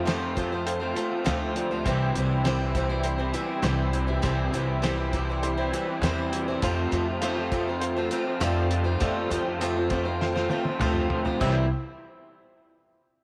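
A straight 4/4 pulse at 100 BPM drives this short, hopeful folk rock and heartland rock cut in C major, with an open-road feel as the harmony moves between F and C. A cloth-damped drum kit gives a dry, thuddy sound with a fat snare, tight kick and dark cymbals, and adds a fill from 10.2 seconds. Under it, a woody pizzicato upright bass sits up front, while a twangy, slightly broken-up electric guitar through a small old amp carries the riff with analog chorus. A bright, boxy acoustic guitar picks a swing-style accompaniment, and a clear baby grand piano with a worn, long-sustaining tone stays in the background after a fill at 0.7 seconds. At 11.4 seconds a clean, compressed pedal steel guitar slides in with a brief second line, all in a small room with light reverb.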